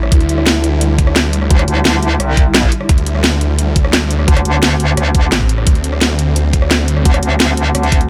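Mechanical and dark, this short cut of technical drum and bass runs at 173 BPM in a straight 4/4, built on a D5 chord where a swarming, granular drone holds slow-attack sustained chords with built-in reverb and sidechain pumping beneath an up-front, knocking electronic kick, a cracking snare, bright hats and rim clicks. A snarling, distorted detuned saw bass growls low until 7.0 s with sidechain pumping, while a metallic FM wobble bass with chorus and saturation enters at 1.5 s. The mix is dry and close, the drums re-recorded in a small room.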